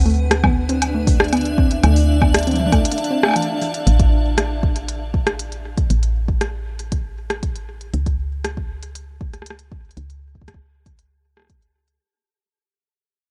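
Glitchy and playful, this IDM excerpt moves at 118 BPM in a straight 4/4, tuned to A4 = 443 Hz. It opens on a Dmadd9 chord held by a cloudy, blurred granular pad with built-in reverb, while a warbling, lo-fi pluck plays arpeggios through chorus and delay; both parts drop away by 3.9 seconds. Underneath, a woody, round FM bass and a deep, up-front electronic kick carry on alongside an organic electronic kit of smooth hi-hats, rim clicks, toms and woodblock fed through delay, and after a break from 2.9 seconds the piece fades out within a dark production with light reverb.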